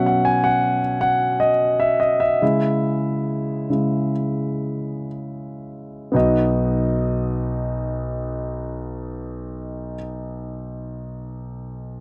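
Pop in B major, heartfelt and emotional, this short section of a longer piece features a concert grand piano in an accompanying role, reaching from deep bass notes up into the upper register. The tempo sits between 56 and 81 BPM in a straight 4/4, slowing down over the opening 6.1 seconds while the piano plays alone, moving from Bsus2 to C#m before settling on B at 6.1 seconds. The piano sounds intimate, polished and up front, with audible action noise and long sustain, captured in a dry, close 1970s-style studio recording with moderate booth ambience.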